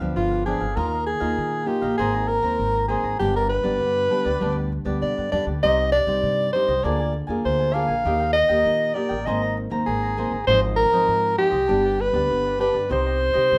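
A straight 4/4 samba at 99 BPM carries a nostalgic, bittersweet mood in this short excerpt, as fingerpicked nylon-string guitar with finger squeak, a crisp picked cavaquinho in the background and a woody, growly pizzicato upright bass support an up-front soprano saxophone solo that enters at 0.2 s with light vibrato, subtone and scooped jazz-style notes over chords moving from G7 through Abadd9 and Eb to Cm, all set in a wet studio reverb and a rough home demo mix.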